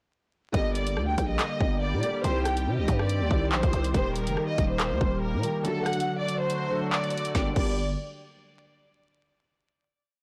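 A lush, bowed violin section carries a looping, vibrato-rich melody with portamento over a dark grand piano's close-voiced rhythmic chords and a detuned sawtooth pad with chorus, moving through Gm, Cm, Eb and D in G harmonic minor. Beneath them, a growling 808-style bass holds long sub notes with pitch slides, and a half-time drill kit at 141 BPM drives with a hard-clipped kick, woody snare, handclaps, rim clicks, crash and skipping hi-hat rolls; the kick drops out from 5.6 to 7.3 seconds before a final Gm chord. This cold, tense hip hop drill piece sits in a blown-out, overdriven mix with vinyl crackle and light digital reverb.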